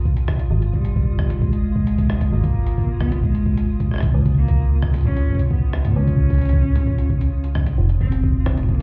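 Heard muffled as if through a wall and soaked in club reverb, this melancholic, eerie IDM fragment at 132 BPM rides a metallic, up-front FM bass and a faint pulsing, detuned gated texture with chorus. A gritty, thumpy pitched-up kick and a tape-warm jungle kit of bongos, hi-hat, rim click and toms carry the beat, and a bowed solo cello with vibrato and digital delay enters at 0.7 s over harmony moving from Cm toward Dbadd9.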